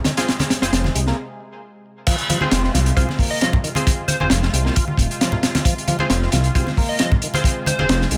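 Raw and gritty, this breakbeat clip is cut from a longer piece and rides a crunchy acoustic drum kit with a punchy kick, a high-tuned snare and dark cymbals, saturated and up front in a small room. A percussive tonewheel organ with key click plays a riff from the background through a slow rotary speaker and delay, with a filter sweep on it during the opening, while compressed, low-tuned congas add thin-skinned, damped hand percussion. A lush, nasal unison pad holds sustained chords under chorus and sidechain pumping, and bold orchestra-hit-like synth stabs cut in with built-in reverb and delay. A deep, rumbling detuned saw bass with tube saturation enters at 0.6 seconds, and after a short break the drop arrives at 2.1 seconds. From 3.3 seconds a catchy, plucky unison lead carries the melody through a telephone sound and delay.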